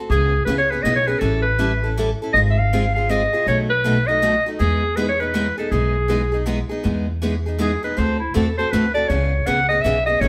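Recorded live by a band playing together in a moderately reverberant stone room, this excerpt keeps all three players up front. It is acoustic string swing in the jazz manouche style, set in a lilting triple metre with a swung feel, and its mood is playful and charming. A picked steel-string parlour guitar supplies boxy accompaniment, while an upright bass played pizzicato on gut strings gives a dark, woody, thumpy low end. The clarinet carries the melody in a vintage jazz style with a bright, punchy, forceful tone and light vibrato. The opening section moves through jazzy chords such as C#m7, A9 and Emaj7, and from 6.8 seconds the clarinet takes a solo over harmony that passes through D9 and back to C#m7.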